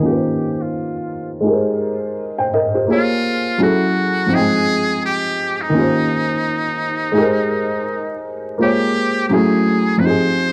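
Hip hop at 84 BPM in 4/4 with a swung sixteenth feel in Bb dorian, this reflective, nostalgic excerpt pairs a dark upright piano, mellow, woody and short in sustain, with a solo trumpet in a metal mute that sounds brilliant yet thin and buzzy, played in a forceful jazz style with vibrato. The piano accompanies through chords such as Eb13, Abmaj7, Bbm9, Gbm9 and Fm9 while the trumpet carries the melody, both parts running the full 10.5 seconds. A filter sweep colors the opening 2.9 seconds, and the dry, gritty recording adds transformer saturation, vinyl crackle, a low-pass filter and a light touch of small-room reverb.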